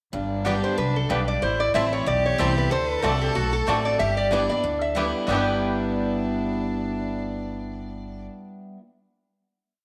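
Swung eighths ride over the upright bass's woody, thumpy two-beat root-and-fifth line with walk-ups, while the up-front, full-bodied jumbo guitar alternates bass notes and strums with bass runs in this short, joyful and rustic bluegrass piece. The metallic, nasal lap resonator guitar carries the fiddle tune in running eighth notes with slide and fingerpicks, shadowed by a smooth fiddle counter-melody with light vibrato. In the background, the twangy banjo rolls and vamps off the beat and the mellow, round mandolin chops on the off-beats, all in a moderate echo-chamber reverb until the band settles on a final chord from 5.3 seconds.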